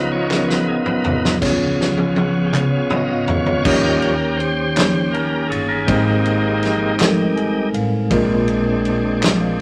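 A moderate studio reverb lends space to this slow gospel excerpt, with a big-room drum kit and a shouting tonewheel organ sitting up front. At 54 BPM in 6/8 with a straight feel, tuned to A4 = 445 Hz, the mood is jubilant yet reverent. The organ holds full, bright chords with audible key click through a slow rotary speaker and takes the lead at the opening and again through the closing stretch, while a mellow, clean tine electric piano accompanies and adds a fill at 7.0 s. A woody pizzicato upright bass anchors the low end. The swinging big-band kit brings a punchy kick, medium-tuned snare, crash, ride and toms with fills in the early passages, joined by crisp, close handclaps. At 5.1 s a twangy, picked electric guitar with an envelope filter and spring reverb slips in a brief second line. Across the excerpt the harmony moves from C#7 through Eb7 and Abmaj7 to Bb7.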